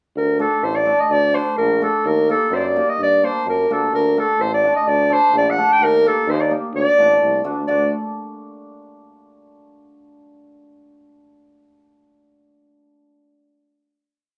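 A warm, roomy clarinet sits up front from 0.2 s, spinning an ornamented modal melody in a classical style that feels both festive and bittersweet in this short klezmer piece. The clear tuba enters alongside it, holding down a vintage, pop-flavoured bass figure in quarters with vibrato and scooped notes. From 0.4 s a hammered cimbalom adds shimmering, ringing off-beat chords in triad voicings. At 128 BPM in a straight 2/4, the tune sits in D phrygian dominant, tuned slightly low to A4 = 436 Hz, and moves through D, Eb, Gm, D5, Eb and back to D. The band plays live in one room with a wet studio reverb, the clarinet carrying a distant quality, and the piece closes on a final chord at 7.7 s.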